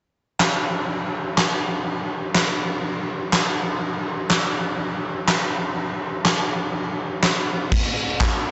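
A straight 4/4 pop groove at 123 BPM drives this confident clip from a longer piece. A huge, up-front acoustic arena drum kit enters at 0.4 s and plays through 8.3 s, with a punchy kick, fat snare, handclaps and bright crash cymbals ringing in a pumping hall-like room with moderate reverb, all softened by a cassette-tape sound that rolls off the highest frequencies.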